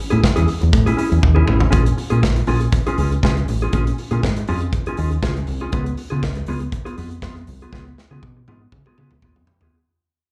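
A mellow, clean electric guitar, a round, punchy fingered bass and an acoustic drum kit with a punchy kick all start together in this sultry, danceable disco cut from a longer piece, with the bass and drums sitting up front and the guitar's dark, compressed tone carrying plate reverb and slapback echo. The harmony moves from Amaj7 to A#m7 at 1.7 seconds and on to C#7, and the kit plays a short fill just before that first change. The whole piece fades out from 1.7 seconds while a longer drum fill closes it from 7.7 seconds, all heard as a live gig through a venue's sound system with a touch of club reverb.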